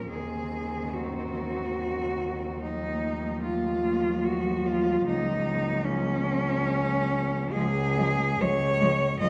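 A wet recital-hall reverb, heard from further back in the room, surrounds this short classical passage for four bowed cellos, a lyrical and warm piece in B-flat minor at 73 BPM in 3/4, with uneven beats and rubato phrasing. Up front, an intense single cello with vibrato carries the melody from Db4 to Eb5, while a close, smooth, even cello holds the bass low on Db2 to Eb2. Two focused cellos in the background fill in a second line and accompaniment as the harmony moves from Cdim/Eb through F7/Eb to Bbm/Db, all four playing together throughout the 9.3 seconds.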